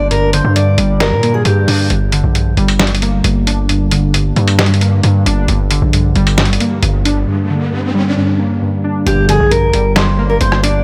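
A heavy, saturated 808-style bass anchors this melancholic, eerie trap cut at 134 BPM in a half-time feel in G minor, up front beside warbling, detuned lo-fi synth keys with chorus and a muffled, pitched-down sampler drum kit of finger snaps, hi-hat, rim click and snare. A bright, full-bodied fingerpicked steel-string acoustic guitar carries the melody through tape echo until 1.9 seconds. An electronic riser rises at 7.0 seconds, and at 9.1 seconds the guitar returns with a brief, dark, round synth brass stab in the background, all within light digital ambience.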